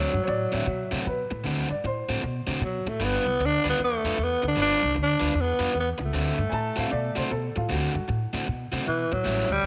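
A swinging 154 BPM shuffle in 4/4 drives this rollicking, swaggering electric blues fragment in D mixolydian, where a raspy, growling tenor saxophone with scooped notes and slapback echo leads up front over an overdriven, picked semi-hollow guitar riff and a woody pizzicato upright bass, while a slightly detuned upright piano with audible action noise adds an intimate second line from 0.2 to 2.5 seconds and again from 6.5 to 8.1 seconds, set in moderate spring reverb as the harmony moves from D7 to G7 at 3.0 seconds and back to D7.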